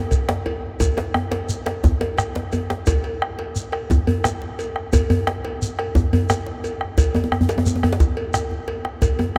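Driving and powerful, this short cut from a longer West African traditional drum ensemble piece moves at 117 BPM in a straight 12/8, set in a vast, echoing cathedral-like space with a long reverb tail. A deep, dark bombo sits close and dry up front beside a deep djembe with metal rattles, while a second, medium-tuned djembe played with hard hands stays in the background, joined by a metallic cowbell and a grainy, mellow shekere. A drum fill opens the passage before the main section settles in at 0.8 seconds, and another fill arrives at 8.3 seconds near the close.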